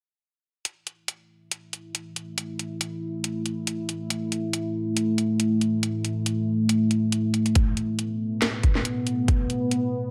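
Deep dubstep at 139 BPM in a half-time feel with swung 16ths, this heavy, cavernous excerpt opens with an electronic garage kit of cracking snare and warm hi-hats at 0.7 s, joined at 2.3 s by a deep, dark, warbling detuned sawtooth pad with a sub octave, chorus and its own reverb, before a gritty, thumpy, pitched-down kick enters up front at 7.6 s, all in a moderate digital room.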